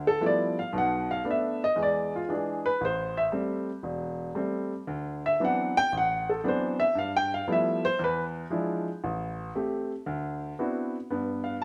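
A lone grand piano opens this solo jazz performance, taken from a longer piece, and carries the whole passage from 0.0 to 11.6 seconds. The mood is playful and warm, with a swing in 4/4 that gives the eighth notes a lilting bounce. The piano sits up front with an intimate, natural tone, and the noise of its action is audible beneath the notes, adding to the sense of closeness. Its range stretches from deep bass notes up into the upper middle register. The harmony moves through rich jazz chords such as G13, E7, Am7, D13 and E7b9 before landing on G7 at 11.1 seconds. A moderate stone-room reverb surrounds the instrument, giving the impression of a player performing live in one room.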